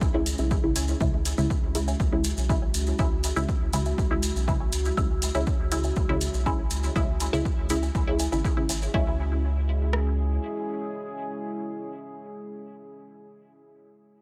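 A lightly reverberant, hypnotic dub techno fragment built on a dark, moody ambient pad and a bright, resonant filtered chord stab up front with phaser and dub echo, both filter-swept until 8.9 s, over a round sine sub bass, a punchy, overdriven deep house kit of kick and rim click, grainy, distant maracas, a background electronic hi-hat, and a mellow, chorused higher stab riff that enters at 0.8 s, with the pad, stabs and bass all pumping to the sidechain.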